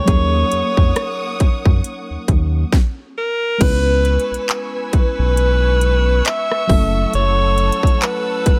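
A dry cut from a longer contemporary R&B piece, moody and late-night, moving at a slow 68 BPM in C# minor with a swung sixteenth-note feel. A bright alto saxophone with light vibrato and tape echo carries the melody up front over a mellow FM electric piano treated with chorus and phaser, while a dark, distant string section holds lush bowed chords with a sidechain pump and a very quiet glassy wavetable pluck adds crystalline texture. From 0.1 s a round analog bass and an electronic trap kit (hard-clipped kick, sharp snare, metallic hats, handclaps, rim clicks and crash) sit up front as the harmony moves from D#m7 to C#m7 at 3.6 s and F#m7 at 6.7 s.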